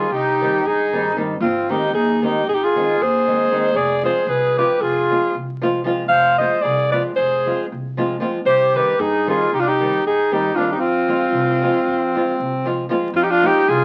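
A vibrato-laden, jazz-inflected alto saxophone leads up front in this fiery yet bittersweet Balkan wedding-band excerpt in 9/8, alongside a reedy, dark, slowly beating accordion second line, fingerpicked flamenco guitar accompaniment and a growly, woody pizzicato upright bass, set in a moderate club reverb and heard through the tube saturation and vinyl crackle of a very old 78 rpm record.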